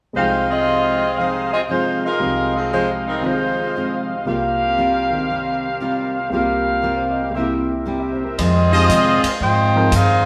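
Picked, full-bodied jumbo acoustic guitar and an intimate grand piano with audible action noise and deep bass open this dramatic, swinging big band excerpt in F minor at 117 BPM, with a tight, clear saxophone section carrying the melody with light vibrato from 0.2 s over smooth-topped trumpet stabs. At 8.4 s a woody, growly pizzicato upright bass and a jazz kit with a boomy kick and dark hi-hat and ride cymbals join, the band heard from further back in a wet echo-chamber reverb.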